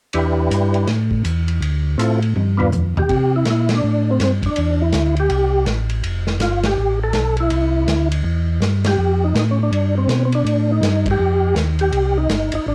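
This home recording on cassette has a light reverb, and the organ melody and drums carry the tape's softened grain. It is a swinging, bluesy soul jazz organ trio cut from a longer piece, moving at 163 BPM in 4/4 with a 63% swing on the eighth notes in C major. A percussive tonewheel organ plays the melody between B3 and B4, its round, dark tone marked by key click, second-harmonic percussion, chorus vibrato and a fast rotary speaker. A mellow tonewheel organ holds the bass from F1 to C3, clean and up front through a slow rotary speaker. The vintage acoustic drum kit sits in a small, pumping room with dark cymbals, a medium-tuned snare and a punchy kick under a rolled-off top, and it plays a fill from 2.4 to 3.1 seconds. From 3.1 seconds the harmony settles onto lush chords like C13, Fadd9 and F13, and the whole band hits a series of accents.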